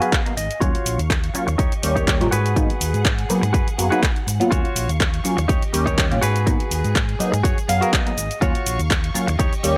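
The clip opens on a funky, detuned sawtooth polysynth comp with chorus, phaser and a pumping low-pass filter sweep, joined from the start by a twangy, direct-recorded clean guitar riff with 12-bit sampler grit and a fill in the first 0.6 seconds, lush bowed violins in the background, and a house kit of cabasa, handclaps and hi-hat. A punchy layered electronic kick arrives at 0.1 seconds and a dark, round, overdriven fingered bass at 0.4 seconds, settling into a groovy, sensual filtered disco house feel at 123 BPM in Eb minor with a light 16th-note swing. Moving through Abm7, Ebm9 and Eb7 chords, it has a dry, gritty hardware sound, with another guitar fill from 7.4 to 8.4 seconds.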